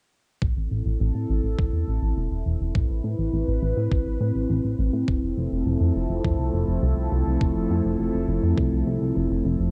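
A chorused synth bass anchors this moody, nostalgic synthwave excerpt, its retro, glossy tone built from pulse and sawtooth waves with pulse-width and ring modulation, a plucky filtered attack and a filter sweep running from 0.4 to 9.7 seconds. Alongside it, an electronic kick drum lands with a thumpy, sampler-style punch, tape-warm and up front, as if re-recorded in a small room. A phased analog pad enters at 0.7 seconds with sustained chords, its swirling, detuned sawtooth texture evolving slowly under phaser and chorus. Both the pad and bass pump against the kick at a straight 103 BPM in A minor, moving from Am to Fmaj7 at 5.1 seconds. The mix is dry and close, with the pad carrying a cassette tape character that suits its home-recorded feel.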